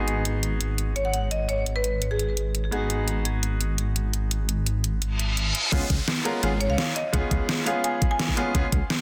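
Densely limited and lightly reverberant, this lush, rolling liquid drum and bass excerpt opens with a brilliant, filter-swept baby grand piano, a rumbling detuned saw bass and an overdriven pop kit with a deep snare, while a woody, close-miked marimba with hard mallets carries the delayed melody from 1.0 seconds before a reverse cymbal and downlifter lead into a drop at 5.7 seconds, where an overdriven, knocking electronic kick joins and the harmony moves from G#m7 to C#7.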